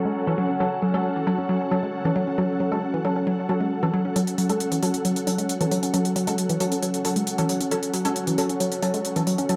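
Cut from a longer piece, this recording sits in a lush hall reverb with a digital sheen and a low-pass filter softening the top. It is driving, intense peak-time techno in a straight four, built on a dark, woody wave-folded pluck riff with tube saturation, chorus and dub echo. Aggressive, thick rave stabs cut through with a bright, detuned edge, carrying chorus, their own reverb and dub echo. Beneath them an analog drone warbles and evolves in the background. Above, an ethereal, airy pad with ensemble chorus and tremolo adds a mellow haze. At 4.2 seconds a tape-touched electronic hi-hat recorded in a small room enters, and a build-up begins as a filter sweep moves across the stabs.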